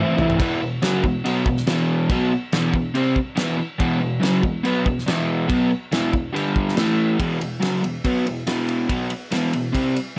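This menacing, gritty garage rock excerpt in E minor drives along at 141 BPM in a straight 4/4, with a brief drum fill opening alongside a crunchy, dark, double-tracked overdriven electric guitar riff that sits up front, picked across E5, G5 and A5 chords before returning to E5 as a new section begins at 7.2 seconds, while a thuddy, cloth-damped acoustic kit of kick, snare, toms, crash and ride, with its fat snare, tight kick, saturated sound and rolled-off top, thuds beneath in a small room, all set in a moderate club reverb.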